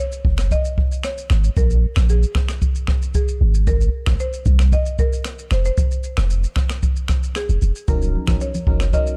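A straight 4/4 afrobeats groove at 114 BPM is set by a jazz brush drum kit of finger snaps, boomy kick, rim click and shaker, sounding acoustic and up front in a studio room. Beneath it, a deep, punchy sine sub bass with a pitch-drop attack sustains low notes, also placed up front. The melody comes from a buzzing marimba played with medium mallets on hardwood bars, woody, dry and close-miked, sitting quieter in the mix with a digital delay trailing its notes. At 7.9 s a biting, warbling vintage FM electric piano with a noise layer and phaser joins as accompaniment, alongside bright, thin-skinned congas played with soft hands in the background. The sultry, hypnotic mood rests on a dark production with little reverb, moving through Ebm7, Absus2/Bb, Ab and Fm in this short cut from a longer piece.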